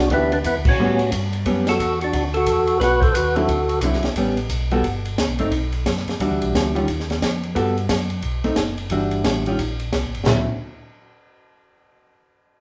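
A fat, lightly overdriven tonewheel organ carries the melody from the first instant, its third-harmonic percussion and slow rotary spin up front, over a round, mellow organ bass line with chorus vibrato, while a clean, compressed hollow-body guitar comps and a compact cocktail kit swings with a punchy kick, high-tuned snare and dark cymbals. The whole band hits an accent at 0.6 seconds, and after the lead organ drops out at 3.8 seconds the bass, guitar and drums keep this soulful, swinging soul jazz organ trio excerpt moving through rich extended chords. The group sounds like it is playing live together in one large studio, bathed in a generous reverb.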